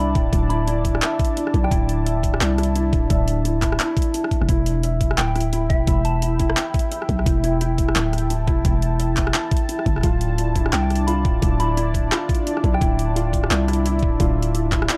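A felt-muted upright piano plays mellow arpeggios through analog delay over a deep, detuned analog pad pumping under sidechain and a growling, buzzy 808-style bass, while a pure FM synth bell with chorus, phaser and 12-bit sampler grit drifts in the background in short phrases. From 0.2 seconds an overdriven knocking electronic kick and a drum and bass kit of bright hi-hats, handclaps and rim clicks drive a swung half-time groove, giving this dark, spacious excerpt a dry, gritty, transformer-saturated sound.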